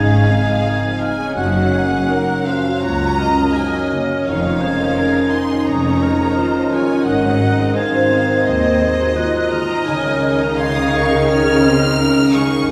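Moving and uplifting, this cinematic excerpt unfolds with a rubato feel as a lush, smooth violin section carries the melody, while a clear, focused second violin section, a dark, very quiet solo clarinet and a hollow, close-miked concert flute add second lines. Underneath, a mellow French horn section holds sustained chords, an intense viola section and ringing, thumb-plucked harp arpeggios sit in the background, and an expressive cello section joins woody bowed double basses on the bass. Wet recital hall reverb places the orchestra further back in the room.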